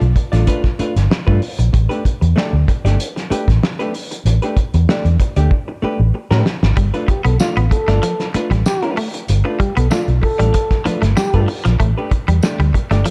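A straight 4/4 funk groove at 95 BPM struts along on a cloth-damped, thuddy drum kit with a fat snare and tight kick in a small, pumping room, locked to an up-front, foam-muted fingered bass that sits round and dark while a hollow-body jazz guitar comps quietly over G9 and A9sus4. After a drum fill at 5.5 seconds, a bright, twangy clean electric guitar picks up a low riff at 6.8 seconds, and a smooth-topped trombone adds a scooped, lightly vibratoed second line at 7.1 seconds, with a jingly tambourine joining at 7.4 seconds. The playful cut has a dark, warm production with studio reverb.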